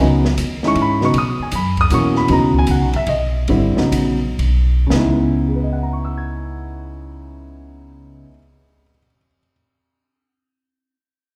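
Opening on a natural, up-front baby grand piano over a woody pizzicato upright bass with steel strings, this intense yet cool modal jazz fragment in a swung 3/4 brings in a dark, smooth drum kit with a punchy kick, hi-hat, ride and snare, eases into a slowdown from 2.3 seconds, moves to a richer chord at 4.9 seconds before losing the drums at 5.1 seconds, and leaves the piano alone from 8.2 seconds, all set in the lingering reverb of a recital hall.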